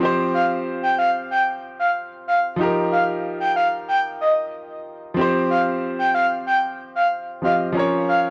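Dancehall with a bouncy, tough mood, heard in a short cut from a longer piece that runs about 8.3 seconds. A bright concert grand piano carries the accompaniment from the start, brilliant and polished with deep bass and short sustain, sitting up front through chords that move from Fsus2 to Ebadd9, back to Fsus2, and onto Bbm at 7.8 seconds. At 0.3 seconds a breathy, flute-like synth lead takes the melody, soft and sustained with a gentle attack, a faint noise layer and vibrato, colored by chorus and tape echo. The lead also sits up front, and it is a touch louder than the piano. Light reverb and studio ambience frame a dry, gritty sound with transformer saturation.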